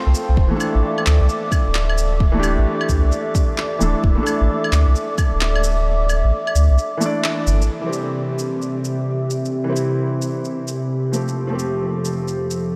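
Future garage in D minor at 131 BPM with a swung 16th-note feel, this ghostly, melancholic excerpt drifts through a huge ambient reverb as a warbling, detuned tape-like pad sustains chords and a felt-muted upright piano with audible action noise plays intimate accompaniment through delay, both pumping with sidechain alongside a deep, round dub sub bass that stops at 7.7 s as the harmony moves from Dsus2 to C and later Fadd9, while tape-warm electronic shaker, claves and handclaps run throughout and a layered, up-front electronic kick drum plays until 5.3 s.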